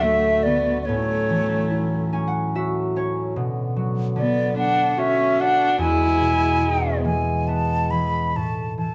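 In an uneven, rubato three-beat sway, this tender, wistful Celtic slow air, cut from a longer piece, sets a close, airy wooden flute melody with vibrato up front over a ringing, fingerpicked concert harp that adds a fill from 1.7 to 3.4 seconds, an intimate sul tasto viola second line that stops at 7.0 seconds, and dark, reedy accordion chords held softly beneath, the band playing together in one room bathed in wet studio reverb.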